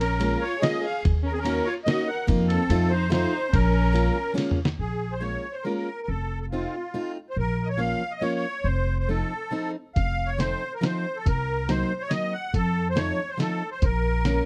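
A reedy, shimmering musette accordion leads this nostalgic, bittersweet musette waltz excerpt in 3/4 from the first beat, joined by an expressive bowed violin with vibrato and portamento that carries a second line until 4.3 seconds, a woody, thumpy pizzicato upright bass up front, a picked steel-string acoustic guitar with audible finger squeak, and a muffled, compressed, pitched-down sampler-style drum kit with a fat snare that plays a fill before dropping out at 4.8 seconds and returns at 10.0 seconds, all in a dark, dry production.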